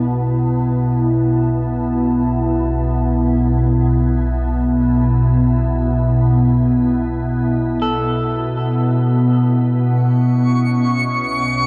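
Luminous ambient music in free time, cut from a longer piece, where a mellow, detuned organ-like pad sustains chords over an ominous, rumbling bass drone, a dark, slightly broken-up electric guitar plays brief arpeggios with spring reverb and delay from 7.8 s, and a sparkling granular texture enters at 10.5 s, all bathed in a huge reverb and the warbling pitch drift of worn cassette tape.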